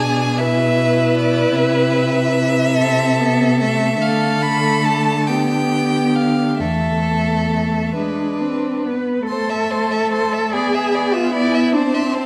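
A solo string quartet opens together at once in this slow, solemn classical fragment, cut from a longer romantic movement in A minor and tuned to A4 = 441 Hz. In 6/8 at roughly 44-51 BPM counted in dotted quarters, the pulse breathes freely with rubato, lending the music an elegiac quality. The first violin carries the melody high in its range, its soft-attacked tone warm and close, shaded with vibrato and expressive portamento, while the second violin weaves a rich inner line beneath it. The viola fills in the accompaniment and the cello anchors the bass, both bowed with vibrato and sliding portamento, the cello sitting up front in the blend. Harmonies drift through dominant-seventh, suspended and diminished colors before a brief new section at 9.3 seconds returns to A minor, and the whole quartet is bathed in a lush scoring-stage reverb that lingers around the strings.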